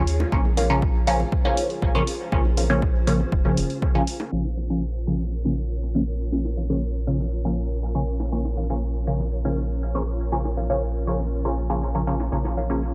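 Muted, detuned chord stabs sit up front in this meditative, nocturnal dub techno cut, phased and trailed by dub echo over a deep, round sub bass with tube saturation, both pumping against the sidechain. A punchy analog kick and dry electronic hi-hat drive the opening until the kick stops at 3.9 s and the hat at 4.2 s, and a filter sweep runs from 4.3 s while very quiet, overdriven bongos and congas carry on. A lo-fi, warbling pluck riff with chorus and echo hangs in the background above a cloudy, evolving granular pad, all captured as a dry, gritty hardware recording under a low-pass filter.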